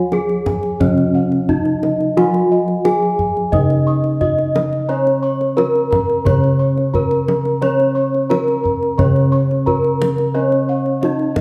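A moderate recital-hall reverb surrounds this 11.4-second cut from a longer Javanese gamelan piece, giving its ceremonial, shimmering mood a sense of space. At 88 BPM in a straight 4/4, the lead bronze metallophone carries the melody close and up front, its wooden mallet drawing a dry, ringing tone whose paired tuning produces shimmering beats. Beneath it, a second metallophone plays the accompaniment with padded disc mallets, mellow and airy, while a third metallophone adds soft arpeggios up high. Two sets of bossed gongs fill out the texture: one spins round, beating arpeggios with a boxy small-room colour, and the other anchors the bass with padded beaters and a gentle bronze glow. The kendang enters at 0.1 seconds with a deep, acoustic drum sound heard close to the microphone.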